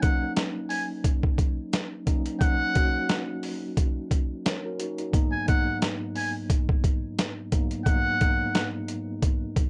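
A gritty, overdriven sampler-style drum kit with a thumpy kick and a medium-tuned snare opens this reflective, moody boom-bap hip-hop cut alongside a mellow tine electric piano heard as if through its own built-in speakers, while an up-front, buzzy metal-muted trumpet plays a jazz-style solo melody with light vibrato and scooped notes until 8.7 seconds, all under a light reverb and the warbly pitch drift of worn old cassette tape.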